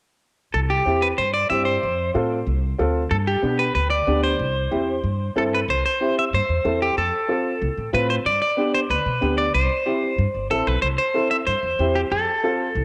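Festive and joyful, this latin excerpt puts a twangy, picked clean electric guitar melody with spring reverb up front over woody pizzicato upright bass and a slightly detuned upright piano whose audible action noise, tape coloring and plate reverb lend an intimate feel to the lightly reverberant home cassette recording.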